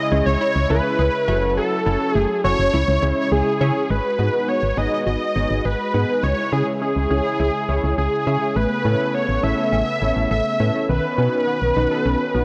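A thick, bright unison lead sits up front from the first moment, its detuned, wave-folded sawtooth tone carrying the melody with vibrato in this melancholic yet driving synth-pop excerpt cut from a longer piece. Beneath it, a punchy, round FM bass anchors the low end with a dark, digital edge and fast, decaying notes. A brassy analog pad holds sustained chords with a soft attack, an evolving filter swell and chorus. Mellow analog keys with a sub octave and chorus fill in the accompaniment, while a very quiet analog pluck with a noise layer traces arpeggios through the mix. The harmony moves from C#m and F#m7 into a second section at 3.9 seconds that passes through G#m7, Aadd9 and Badd9, and the whole recording is bathed in a lush hall reverb and a worn, warbling cassette-tape pitch drift.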